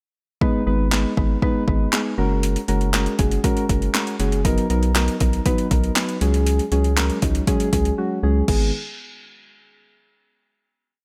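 Soft, electric-piano-like synth keys sit up front in this short, complete dance-pop piece in G# minor at 119 BPM. They play gentle, full-bodied chords in eighths with drop-2 voicings, shaped by chorus, a filter sweep and sidechain pumping. The progression moves from G#m through F#add9, Bmaj7 and C#sus4, giving the energetic groove a bittersweet color. A deep house drum kit drives a syncopated pop beat with a deep kick, a punchy snare layered with handclaps, metallic hats and crash cymbal, all with a tape-warm, produced edge. Beneath it, a round analog bass with a dark, wave-folded tone plays off-beat notes and pumps with the sidechain. The drums fall silent from 8.0 to 8.5 seconds, and the keys and bass settle on a final G#m chord at 8.5 seconds in a dry, close-sounding mix.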